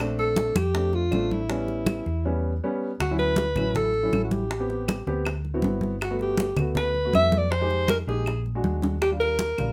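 Afro-Cuban jazz at a lively, sunny 160 BPM in 4/4, this short excerpt puts a breathy, mellow alto saxophone up front from 0.2 seconds, its subtone, vibrato and scooped notes carrying the melody over a dark upright piano with audible action noise and a round, hollow-body electric bass. Close, dry congas with a damped, thin skin, tight high-tuned bongos struck with hard hands and woody claves in the background drive the groove, with a drum fill at 8.3 seconds. The harmony moves through rich chords from Bbmaj7 to a closing Ebmaj7 under light reverb.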